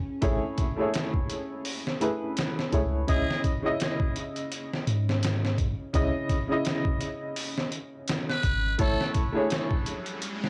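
A lo-fi cassette home recording with light reverb frames this dark, brooding trip hop excerpt in C# minor, moving at 84 BPM with a gentle swing as chords shift from Amaj7 to C#madd9 and back. A woody, slightly detuned upright piano sits up front with tremolo, sampler grit and tape echo, over a soft, round 808-style bass with tube saturation, a very quiet string-like drone held on C#4, and a gritty, pitched-down sampler drum kit with a thumpy kick that enters at 0.2 seconds. A raspy, buzzy trumpet with a metal mute adds brief melodic phrases between 3.1 and 9.1 seconds, and an electronic riser closes the passage from 9.7 seconds.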